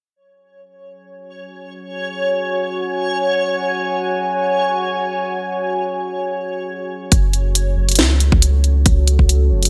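A deep, moody ambient pad of detuned sawtooth and sine layers, wave-folded and ring-modulated with a sub octave, holds sustained F# minor chords from 1.9 seconds, its slow attack and long release softened by chorus. It floats over a reversed, granular texture that glows brightly on a single C#5 from 1.4 seconds in this meditative, heavy, free-time deep dubstep fragment. At 7.1 seconds a round triangle-and-square sub bass with tube saturation arrives alongside a tight, tape-tinged electronic kick and a gate-reverbed garage kit with hi-hat and a cracking snare, all set in a lush hall with a crisp 1980s-style digital sheen.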